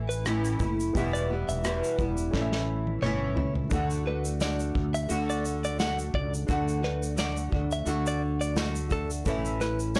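A fingerpicked nylon-string guitar sits up front with a small, double-tracked sound, carrying the accompaniment through this carefree, heartfelt acoustic pop excerpt in D major at 87 BPM, with a light 16th-note swing. Beneath it, a mellow fretless electric bass gives round, punchy low notes, thickened with ensemble chorus, while a dark upright piano sits in the background with woody, short-sustained chords. A clean electric guitar, recorded direct and compressed, picks arpeggios high in its range, and an unplugged drum kit played with bundle sticks adds kick, rim click, shaker, snare and toms in a small room, with soft clipping on the kick and snare. A drum fill from 2.3 to 3.7 seconds leads into a new section where the harmony settles on D, and a very quiet, jingly tambourine joins at 4.4 seconds. The whole mix carries light reverb yet sounds blown-out and overdriven.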